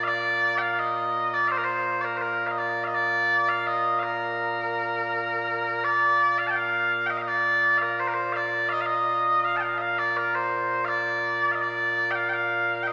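This is Scottish traditional pipe music, a short passage cut from a longer piece, with a proud, ceremonial mood. It moves at a steady 83 BPM in 2/4 with a straight feel, set in Bb major. A solo set of small bagpipes carries everything, sitting up front with a mellow, sweet, continuous tone touched with vibrato and spanning Bb2 to A5. The tune opens with one phrase before a second strain takes over at 5.8 seconds and runs to the end at 12.9 seconds. The pipes ring out in a church or concert hall, where a lush reverb with a 2.3-second tail adds grandeur while the top end stays soft and rounded.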